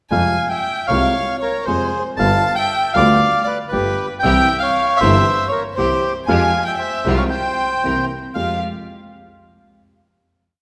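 A reedy, dark bandoneon carries this brief, passionate and tense tango, singing smooth, motif-based song phrases up front that are partly doubled in thirds. A warm violin shadows it in unison as a second line, bowed by a single player with vibrato, soft attacks and expressive portamento. Beneath them, a mellow, woody upright piano with a vintage character and a distant, intense bowed double bass both lay down a milonga rhythm, while the whole performance breathes with a rubato feel in 4/4. At 4.2 seconds a lush symphonic string section joins in the background, its focused, bowed ensemble stabs also following the milonga pulse. The harmony turns on a minor added-ninth chord, and the piece comes to rest on it at 8.4 seconds, the final chord ringing out in a wet concert hall reverb.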